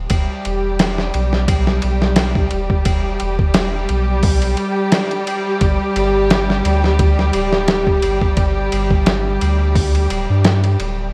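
A dusty, sampler-style soul drum kit sets a swung trip hop groove at 87 BPM in 4/4, its thumpy kick, medium-tuned snare, hi-hat and ride sounding gritty and compressed, as if re-recorded in a large room. A soft, round dub sub bass sits deep underneath while a clear, lush symphonic string section holds sustained bowed chords with vibrato, moving from Em to G5 at 5.6 seconds. The mood is dark and hypnotic, with vinyl crackle and little reverb keeping this brief cut from a longer piece dry and close.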